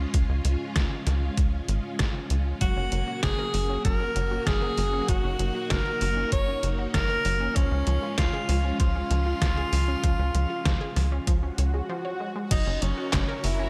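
A breathy, close-miked tenor saxophone carries the melody up front in this dreamy, nostalgic synthwave excerpt, entering at 2.6 s with scooped, jazz-style notes and slapback echo, alongside a round, detuned analog pluck playing arpeggios in the background with vintage 12-bit sampler grit. Beneath them, a lush string machine holds chords and a punchy sawtooth sequencer bass drives, both pumping with sidechain, while a thumpy electronic kick and a tape-tinged 8-bit drum machine supply snare, handclaps, hi-hat and crash. An electronic swell at 11.4 s leads into a short break, then a very quiet, airy lead with vibrato and portamento adds a second line from 12.5 s, set in the big arena sound of a scoring-stage reverb.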